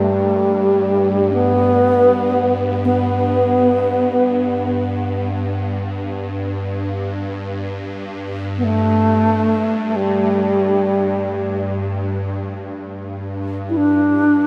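World meditative music in free time and G major pentatonic, this peaceful, spacious 14.5-second fragment sets an airy, up-front bass flute melody, tongued and played with vibrato through shimmer reverb and diffuse ambient delay, over a quieter, morphing sine-based wavetable drone on G2, detuned and thickened by ensemble chorus, all placed in a vast, echoing space with a huge 8.2-second reverb tail.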